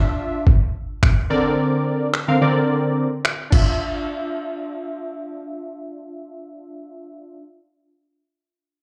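Heard as a live gig through the venue's PA with club reverb, this short dance-pop clip in D minor moves at 108 BPM with an energetic, driving feel. Up-front analog keys with a round, detuned sawtooth tone carry the Dmadd9 and Bbadd9/D chords, shaped by chorus, sidechain pumping, a low-pass filter, slapback echo and a filter sweep through the first 3.8 seconds. A gritty, pitched-down trip hop sampler kit with a thumpy kick, finger snaps and crash cymbal plays from 0.5 to 3.7 seconds, after which the keys continue alone to 7.4 seconds.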